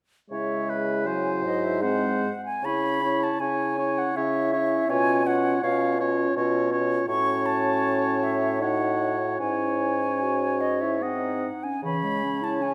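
A solemn, elegiac fragment of a slow romantic wind quintet movement in C# minor opens at 0.3 s, with an airy, tongued concert flute singing the melody with vibrato over a clear oboe second line, a roomy French horn and a dark, distant clarinet in accompaniment, and a warm, up-front bassoon holding the bass, all moving in a rubato 3/4 at 69-84 BPM through shadowed harmonies that return to C# minor, inside the moderate reverb of a scoring stage.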